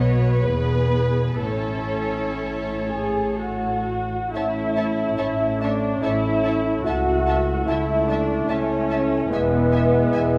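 Up front, a muted viola section with light vibrato carries the accompaniment in this excerpt from a slow, yearning and elegiac romantic orchestral movement in A major. It moves at 60-76 BPM in a rubato 3/4, with muted violin sections singing the melody and a second line over veiled cellos and double basses in the bass. A pure, straight-toned flute ensemble joins in the background at 2.9 s, and around 4.3 s a mellow French horn section adds sustained chords alongside a solo bassoon and a dark clarinet line, all inside a moderate scoring-stage reverb as the harmony rests on E, A and A/C#.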